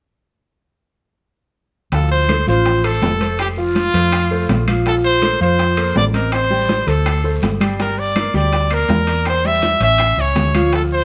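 A punchy trumpet leads this driving, danceable salsa cut from a longer piece, its bright, vibrato-laden pop-style solo sitting up front over a fast 164 BPM in D minor. Beside it, a brilliant concert grand piano with deep bass supplies the accompaniment, while a dark, round hollow-body short-scale electric bass, fingered and amped, sits prominently in the mix. Behind them, a bed of percussion keeps the groove moving: damped, high-tuned congas with a thick skin, compressed and saturated low-tuned bongos, ringing metal-shell timbales, and a raspy, close guiro. Woody claves, distant and very quiet, join at 2.3 seconds. The harmony moves from Dm7 through F, Bbsus2 and Gm before closing on A around 10.0 seconds, all heard as a band playing live together in one room with moderate studio reverb.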